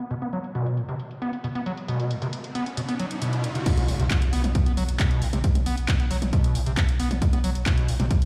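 Driving peak-time techno at 135 BPM with an intense, relentless mood, this cut from a longer piece opens with a punchy, tape-warm analog drum machine of crash, handclaps, hi-hat and toms beneath a squelchy, gritty, resonant acid bass riff, up front with distortion, subtle chorus, sidechain pumping and digital delay, whose filter sweeps as a riser builds from 1.6 seconds, until the drop hits at 3.7 seconds with an impact, a punchy electronic kick and a deep, round sub bass with overdrive, low-pass filtering and sidechain pumping, all bathed in a lush hall reverb and the stony echo of a bare room.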